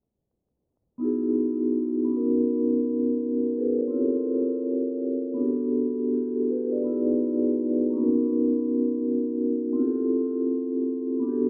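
A metallic, ringing vibraphone, played with medium mallets and a slow motor vibrato, enters at 1.0 seconds and carries this hazy, melancholic hip hop excerpt on its own, its cassette-tape colouring sitting up front. It drifts through lush major ninth and thirteenth chords over a swung sixteenth-note feel, while a filter sweep runs the full length until 11.5 seconds. A long plate reverb, vinyl crackle and a low-pass filter soak the whole mix in a dreamy, muffled haze.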